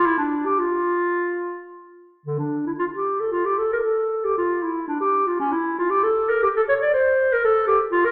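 A lone clarinet with a warm, soft-attacked tone opens this flowing, dance-like baroque-style classical fantasia, moving in a rubato 3/4 at around 105-119 BPM across a range from D3 to D5, its sound placed up front yet roomy within a wet recital hall reverb, in a brief 8.1-second fragment cut from a longer piece.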